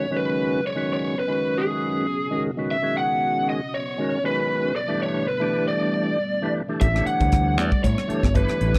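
A dry, close 1970s-style studio sound with small room ambience frames this short, funky and bright slice of electric jazz fusion at 117 BPM in a straight 4/4. A dark, overdriven lead guitar through a small cranked amp carries the melody from the start, its picked, lo-fi tone sitting up front, while a full, clean percussive tonewheel organ with key click and slow rotary speaker supplies accompaniment. Behind them, a vintage string machine voiced as cellos holds sustained sawtooth chords with a sub octave, slow attack, long release, phaser and ensemble chorus, shading the background. The harmony moves from F#9sus4 to A9sus4 at 4.8 seconds. At 6.8 seconds a growly, direct fingered electric bass with transformer saturation and a crisp, polished fusion drum kit enter together, the kit's tight kick, hi-hat and rim click adding an airy snap.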